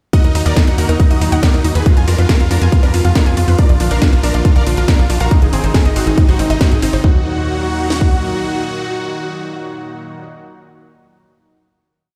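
A four-on-the-floor house kit with a punchy kick and cracking snare drives this euphoric uplifting trance piece at 139 BPM in Eb harmonic minor, joined by a second kit layer of programmed hats and backbeat snare with pumping hats, and a tight, rolling sixteenth-note sawtooth sequencer bass with sidechain pumping. Over a lush, airy supersaw pad holding sustained chords, a huge, full-bodied supersaw lead carries a repeating sixteenth-note riff over a pedal note in thirds and sixths, coloured by phaser, digital delay and sidechain pumping, and a very quiet unison pluck doubles it. A round analog pluck with chorus and delay runs a 6-step arpeggio loop drifting against the bar in the background until 7.2 s, while the drums drop out around 8.1 s, leaving the synths to ring into a final Ebm chord inside a large studio reverb.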